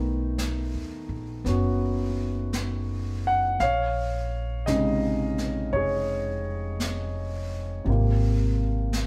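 An up-front grand piano carries this intimate, late-night jazz ballad, its long sustain and audible action noise giving the chords a close, natural presence. It moves through Cb7, Bbm11 and Ab69 at a slow 56 BPM in 4/4, with a swung eighth-note feel and tuning set to A4 = 441 Hz. Beside it, a woody, pizzicato upright bass with steel strings sits equally forward in the low register. A jazz kit played with brushes joins at 0.4 s, its brushed snare, medium-tuned snare drum and hi-hat kept quieter than the piano and bass. The band plays live in one room, wrapped in a moderate stone-room reverb. This brief passage is cut from a longer piece and runs 9.1 seconds.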